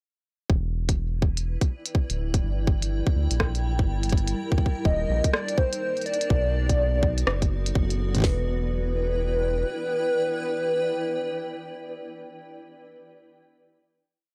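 An intricate, glitchy IDM piece at 124 BPM with a swung 16th feel opens at 0.5 s on an up-front electronic drum kit playing a broken pattern of tight kick, tiny snare and open hat, joined at 0.9 s by a second up-front kit with an ever-changing, glitched beat of clicky closed hats and rim clicks. Beneath them, a deep, round analog bass plays long gliding notes, and from 1.5 s a cloudy, detuned granular pad brings bright, slowly shifting chords from Em7 through Gm6, D#6 and Bm7. At 4.9 s a warbling, nostalgic lead with chorus, delay and vibrato adds call-like motifs, and when the groove ends at 8.2 s the pad and lead ring out over a final Em7, the mix carrying a dry, gritty hardware character with cassette-tape and transformer saturation.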